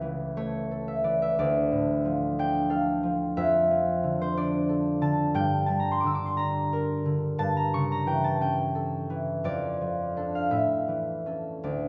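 Classical solo harp piece in D minor, with a wistful, mysterious mood that unfolds over this 11.9-second excerpt cut from a longer work. The tempo sits around 53-62 BPM in a rubato 6/8, giving the phrases a lilting, unhurried sway. The concert harp plays alone throughout, sounding warm and ringing, fingerpicked and placed up front, ranging from C#2 up to E6. The harmony opens on A over C#, settles into D minor, then moves through Gm and A7 over G before returning toward D minor and closing on A, leaving the passage unresolved. A moderate concert hall reverb adds space around the strings, while the top end is rolled off, lending the sound a soft, rounded quality.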